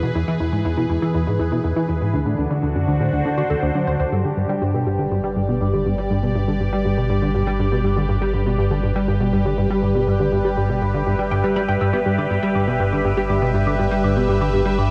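The clip opens on a punchy, funky analog bass riff with a filter sweep, set against a swirling, phased pad of sustained chords and a warbling, lo-fi pluck tracing arpeggios in the background, all moving over E and D7 chords. At 4.1 s the music settles into G major and a round sine sub bass enters beneath, giving this luminous, cosmic space music at 121 BPM a deep floor. A wet cathedral reverb places the sequencer-driven parts in a vast, echoing space, with chorus and tape echo on the pluck and bass.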